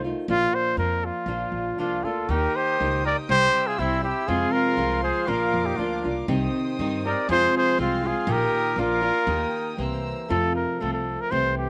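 Set in a rubato 2/4 at 120 BPM in E-flat major, this festive, romantic mariachi passage, cut from a longer piece, puts a warm, classical-style trumpet melody up front over fingerpicked flamenco guitar with audible finger squeak and slapback echo, anchored by woody, thumpy pizzicato upright bass. A second trumpet enters at 1.8 seconds with vintage, jazz-style vibrato, scooped notes and its own slapback echo. From 2.3 seconds a bowed studio violin section adds smooth, reedy sustained chords with a gut-string tone, all captured dry outdoors with little reverb.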